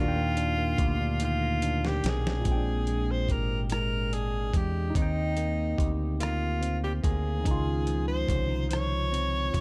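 A dry fragment of a slow, tender R&B groove in 6/8 at 48 BPM in Eb major, moving through Ebmaj7, Bb13, Eb6 and Dbmaj9 with an intimate mood. A bright, punchy tenor saxophone carries the melody up front with vibrato. A clean, fingered electric guitar plays a second line, a barky tine electric piano with light overdrive and phaser fills in the harmony, and a deep, round dub bass anchors the low end. A dusty, gritty sampler-style drum kit with a thumpy kick, rim clicks and a tape-warm sheen enters at 0.4 seconds and plays a fill from 1.2 to 2.5 seconds.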